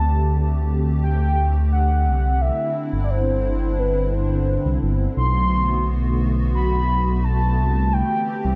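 A light reverb and digital ambience frame this glitchy, cerebral IDM excerpt at 87 BPM in straight 4/4, cut from a longer piece. Up front, a dark, detuned saw bass rumbles and beats with saturated depth, while a hollow, flute-like pad holds mellow sustained chords under ensemble chorus. A velvety synth lead carries the melody with vibrato, chorus and tape echo over chords moving from D7sus4 through Cadd9 and Bm7 to Am7/C.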